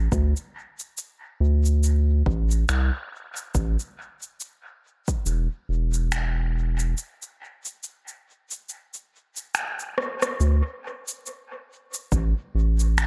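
A round, dark analog bass opens this slow ambient dub excerpt at 70 BPM in 4/4. Its sustained, sine-like tone has a fast attack and sits up front throughout. An overdriven electronic kick with a deep thud joins almost at once, alongside an electronic shaker, finger snaps and rim click that are also overdriven, treated with dub echo and placed up front, while the groove swings on the sixteenths. Both percussion parts carry the character of a large room, though the mix as a whole holds little reverb and leans heavily on echo. The kick stops at 5.2 seconds, a break begins at 7.0 seconds, and a drum fill leads into a new section at 10.4 seconds, with the kick returning only briefly near the close. The result feels meditative and spacious.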